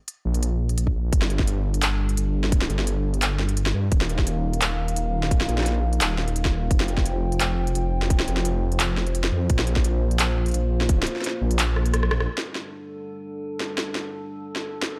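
This dry, gritty hardware recording sits in a digital ambience, and the short cut from a longer half-time drum and bass track feels tense and spacious. An industrial drum kit runs nearly throughout, its clanging snare, crisp hi-hats, rim clicks and handclaps sounding tape-warm and re-recorded in a large room. It sits up front beside a tight, layered electronic kick. A dark, detuned sawtooth bass rumbles low and saturated, its beating, sustained tone also up front until about 12.3 seconds. Above it, a moody, nasal analog pad built from square, saw and triangle waves with a sub octave rises on a slow attack, with chorus and sidechain pumping, moving through G5, Eb5, F5 and Bb5 chords. A drum fill, with the kick dropping out, leads into a band accent, and from 12.7 seconds an eerie, metallic FM drone with a warbling, inharmonic tone, chorus and its own reverb colours the closing moments.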